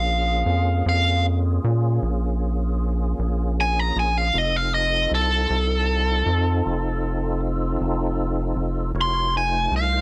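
A dry, close-up sound frames this gritty, laid-back slow blues in F mixolydian, moving at 52 BPM in a straight 12/8 and taken from a longer piece. A biting, overdriven electric guitar carries the melody up front with slapback echo, while a fat tonewheel organ holds sustained chords with key click, chorus vibrato and a slow rotary speaker. Underneath, a rubbery, hollow square-wave bass with a resonant filter pluck sits dark and forward, as the harmony moves from Bbm7 to F7 at 4.3 seconds.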